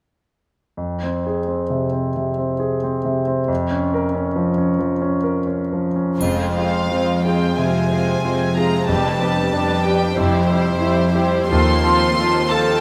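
Classical romantic music for piano and orchestra, passionate and brooding with a rubato, uneven pulse: a clear, intimate grand piano carries the melody from 0.8 s with audible action noise and long sustain. At 6.2 s it is joined by soft-attack, sul tasto strings: floating violins on a second line and then the melody, background violas, rich cellos and dark double basses, with a faint dry triangle. A very quiet hard-mallet timpani enters at 8.9 s, and everything is bathed in a wet scoring-stage reverb.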